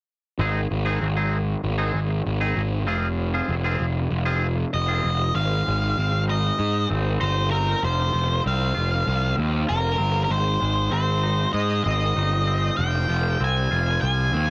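Cathartic and angsty, this rock excerpt moves at 97 BPM in a straight 4/4, cut from a longer piece. A bright, clean, twangy electric guitar picks arpeggios through an analog chorus, sitting further back in the mix beneath a punchy, up-front fuzz bass whose overdriven tone gives the low end its grit. At 4.7 seconds a dark octave-fuzz lead guitar enters with a distorted, picked melody trailed by tape echo, riding high over the other two parts. The harmony cycles between Ab and Fm, with an F5 power chord appearing in the second section. The whole recording carries a heavily compressed, radio-like sound in a digital ambience, its top end rolled off to give a boxed-in, urgent feel.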